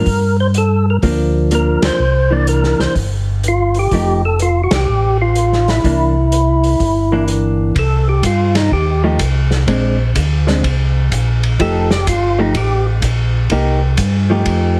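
A swinging 125 BPM soul jazz organ trio groove in F major, greasy and cut from a longer piece, with a fat, percussive tonewheel organ carrying the melody through a slow rotary speaker and light overdrive until 12.9 seconds, a dark, clean hollow-body electric guitar comping, a round, key-clicking organ bass line, and a punchy, dark-cymbaled vintage drum kit in a small pumping room, all heard with light reverb through a heavily compressed radio sound, with band accents at 1.8 and 4.6 seconds and a tonewheel organ solo from 7.8 seconds.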